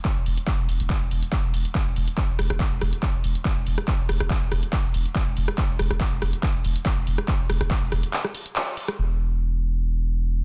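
Driving and relentless, this piece of peak-time techno runs at 141 BPM in a straight 4/4. A punchy analog electronic kick drives it alongside a drum machine playing handclaps, hi-hat and rim click, with sidechain pumping and a low-pass filter on the hats and a low-pass filter on the snare, while a deep, thick, saturated sine sub bass around E1 sits up front with overdrive, sidechain pumping and a low-pass filter. The kick drops out at 7.8 seconds ahead of a break from 8.1 seconds with a band accent at 8.6 seconds, and the bass carries on alone after the drum machine stops at 9.0 seconds, all within a dry, dense, heavily limited modern master cut from a longer track.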